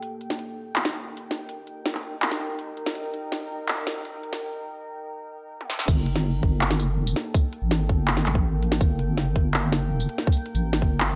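Heard through a moderate echo-chamber reverb, this tense, heavy half-time drum and bass excerpt at 164 BPM in G minor opens with a moody, detuned sawtooth pad carrying chorus and sidechain pumping beneath an up-front industrial kit of clanging snare, crisp hats, handclaps, tambourine, toms and crash, building through a filter sweep and a brief break to a drum fill at 5.6 seconds before the drop at 5.9 seconds, where a deep, saturated, dark wobble bass and a tight, layered electronic kick join.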